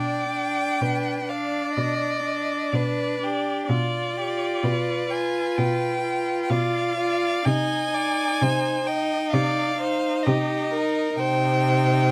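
A slow, romantic string quartet movement in C minor opens with all four players bowing together at once, the first violin singing a yearning, melancholic melody high above the ensemble. Taken at 64 BPM in 4/4 with a flexible, rubato feel, this short excerpt from a longer piece unfolds over G/B and G7/B before settling onto C minor at 7.5 seconds. The lead violin has a rich, focused tone with vibrato and a smooth top, sitting up front, while the second violin carries an even, smooth inner line close behind it. The viola fills in the accompaniment with a clear, focused sound and vibrato, and the cello anchors the bass with a clear, focused voice that sits slightly louder and up front. Close, detailed microphones and light reverb capture each single player intimately, and the tuning is set at A4 = 438 Hz.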